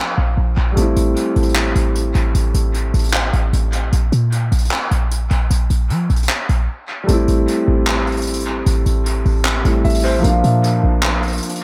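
A half-time trap groove in 4/4 drives this melancholic, menacing hip hop excerpt: a dark concert grand piano with deep, long-sustaining tone, low-pass filtering and dub echo opens the piece, drops out at 3.9 seconds and returns at 7.0, over a punchy, tight 808-style bass with a fast attack, decaying sine body and noise layer, while a vintage brush drum kit with handclaps and hi-hat, natural and rolled-off on top and also touched by dub echo, enters at 0.8 seconds in a small, echo-heavy room.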